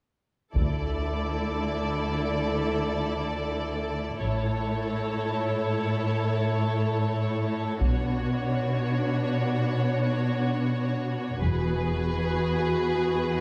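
A fragment of a dark, epic orchestral film cue opens at 0.6 s in free time with bowed strings and a taiko ensemble, the violins carrying a lush, vibrato-rich melody over a second violin line and a focused, close viola accompaniment. Beneath them, an expressive, up-front cello section and a soft-attacked double bass section set in the background anchor a build-up through Dsus2, A, Bmadd9 and Eadd9. The hard-stick taiko, compressed and saturated, returns at 7.8 s, while the distant violins sit in a moderate concert hall reverb.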